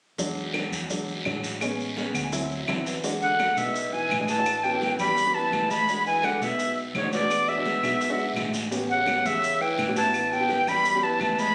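A lively, danceable Afro-Cuban jazz excerpt opens with an intimate baby grand piano accompanying over a dark, round hollow-body electric bass, soft low-tuned bongos, a raspy distant guiro, grainy maracas and woody claves; the piano adds a fill at 2.0 seconds before high-tuned congas arrive at 3.0 seconds, and a pure, up-front concert flute carries the melody from 3.2 seconds over a growling, gritty tenor saxophone second line, the whole captured on a phone in a club-sized room with moderate reverb.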